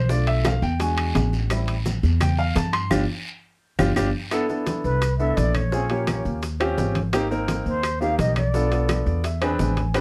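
A polished grand piano opens this sunny, danceable Afro-Cuban jazz clip, sitting up front beside a thumpy, gut-strung upright bass whose pizzicato notes sound dark and woody. Almost at once a percussion bed builds, mostly in the background: low-tuned, thick-skinned congas; tight, high-tuned bongos struck with hard hands; ringing metal-shelled timbales, close and dry; claves; raspy guiro; and grainy, mellow maracas heard from a distance. The piano takes a solo through the opening before a band accent and a drum fill bring the first section to a close at 4.3 seconds, with the guiro dropping out shortly before. At 4.8 seconds a distant, airy bamboo bansuri takes the melody, its soft attack and vibrato carried in plate reverb, as the harmony moves through lush extended chords. A short piano fill arrives at 8.9 seconds, and the whole mix has a dark, warm finish in a moderate club ambience.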